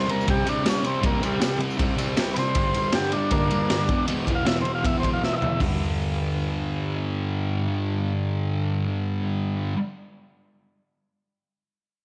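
Rowdy and swaggering, this short garage rock cut from a longer piece charges ahead in a straight 4/4 with a small-band energy. A buzzy, overdriven combo organ with light vibrato carries the melody as a solo from the start, while a thick, dark fuzz guitar, picked and double-tracked, drives the riff up front and keeps going after the other parts drop away, ringing on alone until 9.8 seconds. The raw drum kit sits close and saturated, with a boomy kick, a medium-tuned snare, hi-hat, ride and toms in a pumping small room, its gritty top rolled off, and it closes its run with a fill from 5.2 to 5.6 seconds. A jingly, bright tambourine adds a very quiet, close and dry shimmer near the opening. The home cassette recording gives the guitar and drums a tape grain, and the whole piece sits in light reverb and small room ambience.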